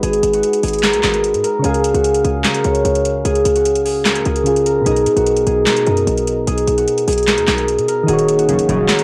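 An up-front, ringing concert harp carries the melody over mellow, chorused electric-piano-like synth keys, punchy short 808-style bass and a booming analog drum machine with crisp snare, metallic hats and handclaps in this dark, eerie half-time trap hip hop excerpt at 149 BPM, with a smooth detuned analog pad entering in the background at 8.1 s and glossy retro polysynth stabs arriving at 8.5 s, all captured as a home recording on cassette and moving from Abm7 through Db and Bmaj7 to Ebm7.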